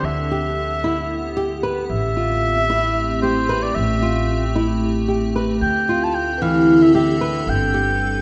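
Contemporary chamber music in a restless, urgent 7/8 at 226 BPM (eighths), where an up-front oboe with light vibrato carries the melody over fingerpicked flamenco guitar arpeggios entering at 0.3 s, woody, thumpy pizzicato upright bass and an icy, crystalline glass pad with chorus holding sustained chords, while a very quiet, bell-like celesta rings in at 6.4 s inside a wet recital hall as the harmony moves from Em7/D through Am7 and Dm11 to G in this short cut from a longer piece.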